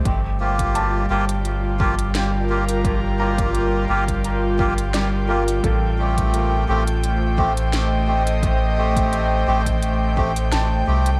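A round, deep sub bass sits up front in this spacious ambient dub excerpt at 86 BPM in 4/4 with a light 16th-note swing, moving from Gm7 to Am7b5 at 5.6 seconds beside an airy, breathy pad of detuned sustained chords with chorus. Reedy, nasal melodica stabs with dub echo enter at 0.4 seconds, while an electronic kick stays punchy in the background and an electronic kit adds a woody snare and crisp hats through dub echo. A felt-muted upright piano plays mellow, intimate arpeggios in the background, its action noise audible beneath vintage 12-bit sampler grit and dub echo, all set in light digital ambience.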